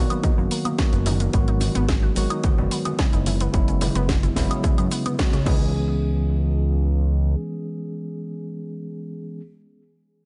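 A clean tine electric piano, a bright, detuned unison pluck playing arpeggios in the background, and a fat, mellow analog bass with a moving notch open this groovy, sleek nu-disco excerpt at 109 BPM in C# dorian, with the piano and pluck pumping against the sidechain and trailing tape echo over Bmaj7, G#m7 and F#9sus4. A punchy, overdriven electronic kick sits up front beside a house kit with a cracking snare, hi-hat, shaker, woodblock and crash, both re-recorded in a large room, while very quiet, distant cabasa and congas ring with hard hands; the drums stop at 5.6 s just after a band accent. Over C#m7 the bass drops out at 7.4 s, and the piano carries on alone to 9.4 s in a digital ambience that tops out at 10.5 kHz.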